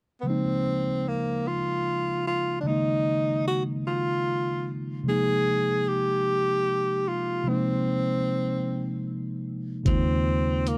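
This is a slow, sensual R&B passage in six-eight, cut from a longer piece. A tenor saxophone carries the melody from 0.2 s in a smooth jazz style, with a soft attack, light vibrato and scooped notes, its tone touched by tape echo. Beneath it, a mellow, clean tine electric piano sits up front in the accompaniment, moving from Eb9sus4 to Bb9sus4. At 9.9 s the harmony returns to Eb9sus4, and a dark, round, foam-muted fingered electric bass joins a gritty, compressed sampler-style drum kit of hi-hat and thumpy kick. The sound is that of a dry, close 1970s-style studio recording with light reverb and a warm glow.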